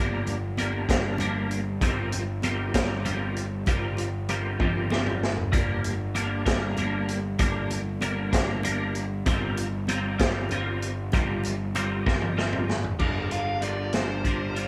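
A slow 6/8 pulse at 64 BPM drives this dark, trippy psychedelic rock excerpt in G minor, with a vintage drum kit entering at 0.3 s alongside very quiet, high-tuned congas, and drum fills near 4.6 and 12.1 seconds. A bright, twangy twelve-string electric guitar runs through a rotary speaker to play the riff over a growly, overdriven fuzz bass holding G1, as the chords move between Gm and Fsus4/G before settling on Gm7. At 13.3 s a distorted fuzz lead guitar takes the melody, all within a live-band sound in a large studio room with moderate reverb.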